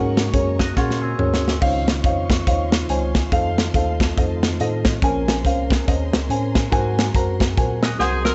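A dry recording with a rounded top end carries this short cut from an uptempo gospel piece at 141 BPM in 4/4, swung on the eighth notes, soulful and jubilant in mood. A dark, worn baby grand piano sits up front with the accompaniment, while a mellow tine electric piano plays the bass line, and a soft, flute-like tonewheel organ holds sustained chords in the background through a slow rotary speaker and chorus vibrato. A distant, bowed string section adds high sustained chords with vibrato and portamento, and a punchy, polished acoustic drum kit comes in at 0.2 seconds, with a fill around 0.8 to 1.6 seconds and another at the close. A twangy, compressed electric guitar through an envelope filter plays a picked second line in two short spots, first from 0.6 to 1.6 seconds. The harmony moves from Ab9sus4 through Dbmaj9, F7 and Bbm9 to Ab9, and at 8.0 seconds a clear saxophone section with light vibrato and slapback echo enters up front with the melody just as the excerpt ends.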